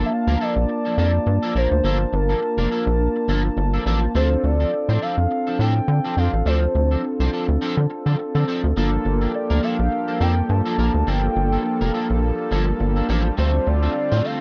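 A rubbery, bouncy square bass sits up front in this late-night funk excerpt at 104 BPM in G minor, moving between Gm9 and Dm7 with a light 16th-note swing under dark, detuned synth brass, a twangy, slightly broken-up electric guitar riff, a smooth gliding lead with vibrato and slapback echo, and a lush, warbling unison pad that enters in the background at 8.8 s, all in a dry, close 1970s-style studio sound.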